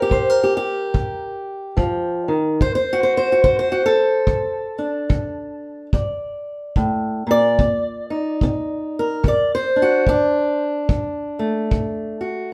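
A boxy, fingerpicked acoustic guitar opens this brooding, mournful fragment of acoustic country blues, carrying the swung melody up front with audible finger squeak. A tight, natural kick drum with brushes enters at 0.1 seconds and sits up front beside the guitar until 11.9 seconds. The duo sounds like a live take in one room, with light reverb.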